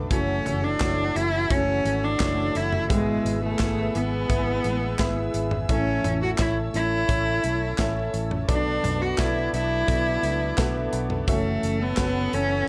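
A rich, focused solo cello carries the melody up front, bowed with vibrato over this anthemic, uplifting stretch of piano-driven pop in a straight four-four feel. Beneath it, a clear baby grand piano plays open, long-sustaining accompaniment and adds fills at 4.6 and 10.2 seconds. A muted string section holds veiled, con sordino chords in the background, while a very quiet fingerpicked steel-string acoustic guitar plays a dark riff. A vintage fingered electric bass gives a round, foam-muted, amped low end, and a polished modern drum kit sits up front with a tight kick, medium-tuned snare, hi-hat, toms and handclaps in an airy studio room. The harmony moves from F#m7 through E/G#, A and Bm7 back to F#m7, all set in light reverb and studio ambience in a piece cut from a longer recording.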